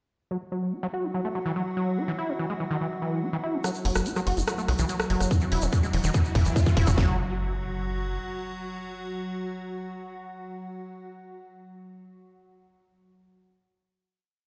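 Intense and alien, this short, complete psychedelic trance piece runs at 144 BPM in a straight 4/4, moving through an intro, a build from 3.6 seconds and a final chord at 7.0 seconds. A squelchy, saturated acid bass opens it at 0.3 seconds, its resonant filter sweeping through an accented, sliding 12-step loop that drifts against the bar, with dub echo and sidechain pumping, while an evolving, detuned wavetable pad drones beneath in sustained chords, morphing and thickened with chorus and its own reverb. At 3.6 seconds a garage drum kit brings bright programmed hi-hats and rim clicks alongside a grainy, close, hand-played tube shaker, and a punchy sequencer bass soon adds a galloping sixteenth-note pulse with a moving notch. A second layer of the kit, the loudest part, carries a tight four-on-the-floor kick and cracking snare from 5.3 seconds through a drum fill, as a very quiet riser and impact sweep the build toward its peak. 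The chords shift between F#5 and E5 before the drums and shaker stop at 7.0 seconds, and the pad rings on with the sequencer bass and the quiet effects in a large, bare-room studio reverb.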